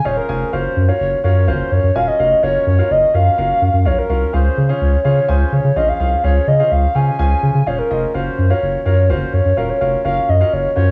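Cassette-tinged home-recording grain and small-room ambience frame this summery, euphoric dance-pop excerpt at 126 BPM, where a hollow, woody clarinet-like synth lead with chorus, vibrato and analog delay carries the melody up front over polished baby grand piano accompaniment moving between Dbmaj7 and Gbmaj7, all anchored by a deep, thick, saturated sine sub bass.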